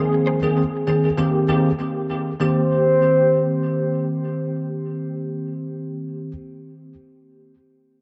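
An echo-heavy mix with moderate spring reverb and rolled-off highs frames this sultry, smooth afrobeats fragment in C minor at 98 BPM with a light sixteenth-note swing, where a bell-like, clean tine electric piano treated with ensemble chorus and tape echo plays the Abadd9 to Cm7 accompaniment throughout, joined at 2.4 s by a round, sub-octave-layered synth lead with chorus and tape echo that holds a sustained C5 until 4.2 s.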